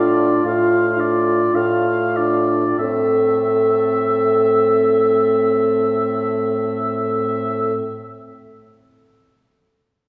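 Oboe, French horn, clarinet and bassoon sound together from the start in this yearning, melancholic fragment of a slow romantic classical movement for wind quintet, where a mellow, present clarinet sits forward among the accompaniment while a clear horn, a dark bassoon with light vibrato holding a low A, and a warm oboe with light vibrato carrying the second line all sound distant and roomy, the rubato opening slowing over a D minor over A chord before settling on A minor at 2.8 seconds, all bathed in a wet concert hall reverb heard from further back in the room.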